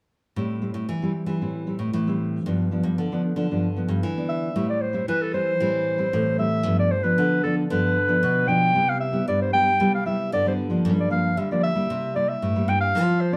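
A small band plays live together in one room, wrapped in a wet studio reverb, in this bittersweet, nostalgic fragment of samba and choro with a straight feel. Two fingerpicked nylon-string guitars sit up front from the start, one carrying a classical accompaniment and the other a dark bass line with audible finger squeak, moving through Am7, G7, Cmaj7, Gm7 and C7. At 4.3 seconds a solo clarinet with a smooth top takes the melody in a classical style, sitting just above the guitars.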